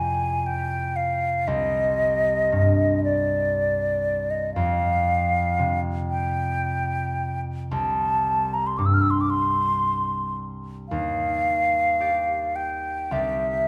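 A mellow, hollow silver flute carries the melody up front with airy vibrato and tongued notes over a ringing, fingerpicked concert harp in this mysterious, wistful impressionist duo in a rubato 3/4. Its chords drift through C minor colours, suspended and open harmonies and an Ebmaj7 before settling on Cadd9, all in a moderate stage reverb and cut from a longer piece.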